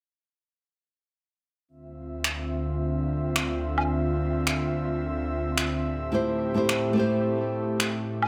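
An airy, breathy pad with chorus holds sustained chords from 1.9 seconds in this smooth, wistful sunset chillout excerpt in D minor at 108 BPM, moving from Dm9 to Am7. Layered electronic finger snaps and woodblock sit up front from 2.2 seconds, and a full-bodied, fingerpicked nylon-string guitar with audible finger squeak and tape echo joins at 6.1 seconds, all within a moderate digital room reverb.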